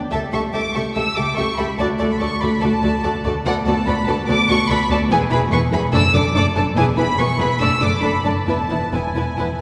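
A church-like reverb with a 3.7-second tail surrounds this cheerful, graceful excerpt of a quick classical-period movement for string orchestra in D major at 144 BPM with a rubato feel, where an up-front violin section carries a floating sul tasto melody above a second violin line, dark soft-attacked violas, a woody cello section with vibrato in the background, and a close double bass section, all bowed from 0.1 seconds as the harmony moves from A7/C# through D, Bm7/D and E.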